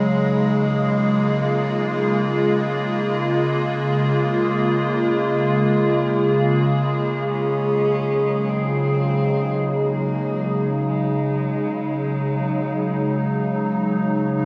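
A luminous, peaceful ambient excerpt in free time opens on a bright, up-front wavetable pad with a detuned, morphing sine character, chorus and its own reverb, holding sustained Bbm7 then Ab7sus4 chords, before a clear, distant bowed cello with vibrato fades in at 7.3 seconds carrying a smooth, quiet melody through delay, and a mellow, nasal analog drone with chorus settles into the background from 12.1 seconds, all bathed in a long cathedral reverb and the worn, warbling pitch drift of old cassette tape.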